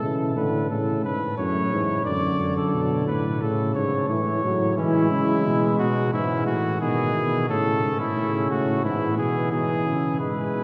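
Elegant and joyful, this passage from a longer classical canzona for brass ensemble moves at a straight 88 BPM in 4/4, set in A major with A tuned to 438 Hz. A mellow trumpet carries the second line with light vibrato, while a close-miked trombone with a gentle vibrato supplies accompaniment and a dark, up-front bass trombone anchors the low end. At 4.8 s a warm cornet enters up front with the melody, and the ensemble sounds from further back inside a long cathedral reverb.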